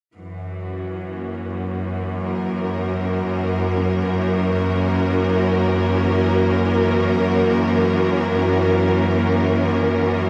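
A string section opens the excerpt at 0.1 seconds, fading in on a sustained F#7 chord in free time. This serene, peaceful ambient piece sits in F# mixolydian, and the bowed ensemble sounds focused and smooth at the top, with vibrato colouring its held harmonies. From 0.2 seconds a cello section joins as the bass, holding a low F#2 with a bright, earthy tone and light vibrato. Both sections sit up front in a concert hall reverb of moderate size, and the recording carries a cassette tape character. The fragment, cut from a longer piece, stays on this single chord through to 10.3 seconds.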